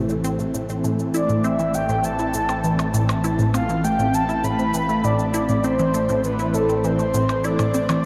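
A phased analog pad holds sustained A minor chords while a squelchy, resonant blip pluck plays a bright riff over a warbling analog drone, with electronic shaker and percussion blips slipping in at 0.1 seconds, in this cosmic, hypnotic stretch of sequencer-driven space music at 100 BPM. At 1.1 seconds a breathy, flute-like synth lead enters up front with vibrato, its melody trailing shimmer reverb and delay. Everything sits in a vast, echoing cathedral reverb, the pad swirling through phaser and chorus as the whole fragment stays on a single chord.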